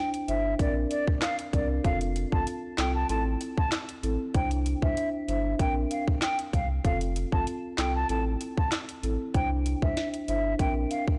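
Sunny and summery, this brief dancehall excerpt moves in a straight 4/4 over a cycling progression of Cadd9, Bbadd9, F and Am. A hollow, pure silver concert flute carries the melody from the start, its vibrato and crisp attack set back at a distance and trailed by digital delay. Beneath it, a marimba played with soft mallets gives woody, round accompaniment from rosewood bars. An electronic island pop drum kit enters at 0.1 seconds, up front with a tight kick, sharp snare, metallic hi-hats, rim clicks and handclaps. A deep, thick sub bass joins at 0.3 seconds, its fast attack and sustained tone pushed forward and thickened by transformer saturation. The whole recording sits in a light reverb yet sounds blown-out and overdriven, lending the bright groove a gritty, pushed edge.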